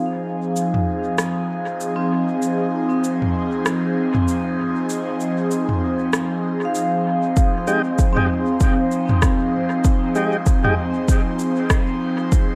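Ambient dub in F minor at 97 BPM, swung on the sixteenths, this short cut from a longer piece feels deep and spacious, resting on a single Fm7 chord. An airy, breathy pad with a slow attack and long release holds sustained chords up front, its detuned tone shimmering through chorus and phaser, while a vibraphone struck with medium hard mallets spins metallic, ringing arpeggios softened by a low-pass filter and tape echo. From 0.6 seconds an organic electronic kit of cabasa, rim click and toms adds tape-warm percussion, set in a small room and trailing dub echo. At 7.4 seconds an overdriven electronic kick arrives, deep and layered, sitting up front, and a smooth tonewheel organ places clean stabs through a slow rotary speaker and dub echo from 7.7 to 10.7 seconds. A moderate recital hall reverb and a dark, warm production give the whole a deep, spacious feel.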